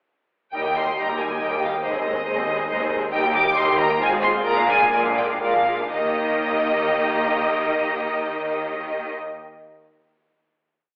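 Cheerful and lively, this brief, complete classical-period movement for symphony orchestra moves in a quick, rubato 3/4 in Eb major, slowing from 2.5 to 5.9 seconds before settling on a final chord held until about 8.9 seconds. An up-front violin section carries a smooth, vibrato-rich melody over second violins and a distant, expressive viola section playing a rocking two-note figure and sustained chords, while a lush cello section in the background gives bass on the beats, doubled by a focused double bass section. The sound is wet with recital-hall reverb yet narrowed to a telephone-like tone, as if captured in a church or concert hall.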